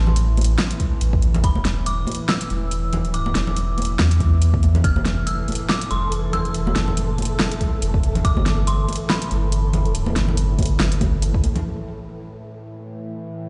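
Booming through a big sound system in a bare room with a large studio reverb and a dulled top end, this brooding, cavernous deep dubstep excerpt sets an eerie, inharmonic detuned synth bell melody with chorus and dub echo over a tense, string-like bowed drone, a round, up-front sub bass, ringing congas with dub echo, a deep house kit of fat snare and filtered metallic hats, a deep electronic kick that drops in and out, and, from 5.2 seconds, a flickering, grainy texture in the background, all riding a swung, half-time groove before the drone holds on alone from 11.7 seconds.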